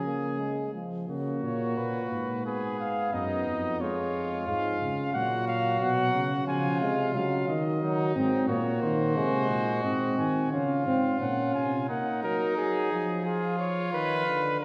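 In a straight 4/4 at 89 BPM, this imitative classical canzona for brass ensemble in F# major feels driving yet contemplative, a short passage cut from a longer piece. A mellow trumpet with light vibrato and a soft attack carries the melody over a clear second trumpet, while a distant, roomy euphonium with light vibrato supplies the accompaniment and an up-front bass trombone of warm tone holds the bass until 11.9 s, as the chords move on to Ebm and Fdim. The players sound set back in a wet concert hall with a 2.0-second reverb tail, with a faint mains hum underneath.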